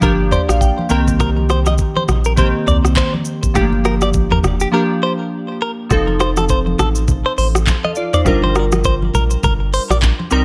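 Glassy, chorused digital keys sit up front in this sultry, hypnotic afrobeats excerpt, over a knocking electronic afro-pop kit of kick, smooth hi-hat, handclaps, rim click, shaker and toms, a round, dark analog bass, a twangy, clean direct-recorded electric guitar riff with digital delay, and soft-handed congas in the background, with a keys fill in the first 1.2 seconds and a break from 4.7 to 5.9 seconds before the harmony moves to F7.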